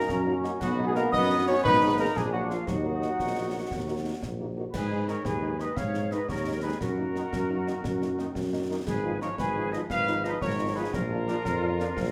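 In a straight 6/8 at 116 BPM, counted in dotted quarters, this military-style march for wind band strides forward in Eb minor with a stern, resolute bearing, cut from a longer piece. A dark trumpet section carries the melody with light vibrato and a smooth top, while a flute section adds a pure, close-miked second line with crisp attack and expressive vibrato. A distant euphonium shares that second line in the background until 4.2 seconds, as a roomy trombone section holds soft-edged sustained chords and a tight French horn section fills in accompaniment behind them. Underneath, a warm tuba sits up front on the bass, and concert snare drum, concert bass drum and clash cymbals keep the march close and dry, the cymbals dark in color. A wet large studio reverb surrounds the ensemble as the music moves from its opening section into a second one at 4.7 seconds, closing on a Bb chord at 10.9 seconds.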